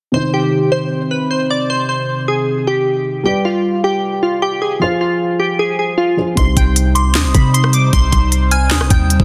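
Menacing and hard-hitting, this trap excerpt in C harmonic minor moves at 154 BPM with a half-time feel, opening on glassy digital keys carrying the melody through chorus, phaser and tape echo over a soft, felt-muted upright piano with a dark, boxy tone. At 6.4 seconds the knocking electronic trap kit arrives up front with sharp snare, crisp hats, handclaps and rim clicks, joined by a deep, boomy 808-style bass. A hollow, flute-like pad with ensemble chorus and a delicate, tinkling FM bell in the background fill out the dense, heavily limited mix, all sitting in light digital reverb.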